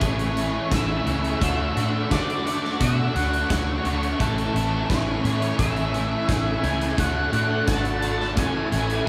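Hazy and wistful, this short section of a longer shoegaze and dream pop rock piece moves at a steady 86 BPM in 4/4, rocking between Amaj7 and Dmaj7 in A major for about 9 seconds. A dark, fuzzy octave-fuzz lead guitar carries the melody through distortion and digital delay, floating over a hollow, flute-like pad of sustained chords that sits mellow and airy in the background with chorus. Two overdriven electric guitars share the riff: one warm, picked and compressed up front with analog chorus, the other set further back and bathed in reverse reverb. A very quiet, twangy clean guitar picks arpeggios underneath, while a vintage muted fingered bass adds a round, foam-muted low end. A huge arena drum kit with a punchy kick, medium-tuned snare and hi-hat booms in a big natural room, and the whole mix is soaked in a vast ambient reverb that gives it a dreamy, blurred glow.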